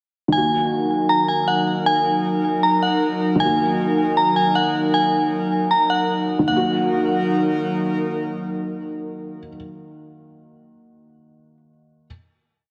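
Menacing and melancholic, this short half-time trap piece at 156 BPM in Eb minor drifts through a dreamy plate-reverb haze as a glassy, crystalline FM bell loops its chorused, low-passed melody up front until 7.6 seconds, a felt-muted upright piano repeats dark, intimate held chords in open voicing until 12.1 seconds, and an airy, breathy detuned pad sustains Ebm through the breakdown into the final chord at 6.5 seconds.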